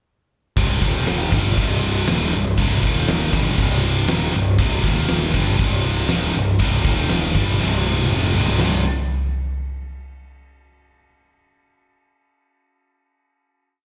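This hard rock piece is aggressive and driving, moving at 119 BPM in a straight 4/4 in C minor. Two scooped, high-gain electric guitars play a distorted, picked power-chord riff that cycles between C, E-flat and C minor chords. One guitar sits up front while the other stays in the background with a slapback echo. A fuzz-toned electric bass, overdriven and punchy, pushes eighth notes and doubles the guitar riff up front in the mix. A huge arena drum kit drives a big rock groove with a fat snare, punchy kick, ride and china cymbals, and toms, and a drum fill runs from 7.6 to 8.6 seconds before the piece closes on a final chord that rings until 10.6 seconds. The whole performance sounds like a live gig heard through the venue's PA, with a recital-hall reverb around it.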